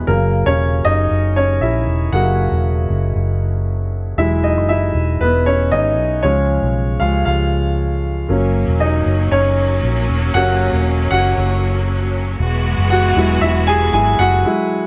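A baby grand piano and a muted electric bass open this hopeful, piano-driven pop passage together. The piano sits up front with a natural, warm tone and carries the lead in a steady, straight four-beat feel, while the fingered bass underneath sounds dark, round and punchy, with a foam-muted, amped vintage character. The harmony moves from F# to Eadd9 and C#, then returns to F# as a clear studio string section enters at 8.3 seconds with smooth, bowed sustained chords full of vibrato and intensity. The strings and bass stop at 14.4 seconds, leaving the piano briefly alone. Light reverb and a studio ambience surround the parts in this passage cut from a longer piece.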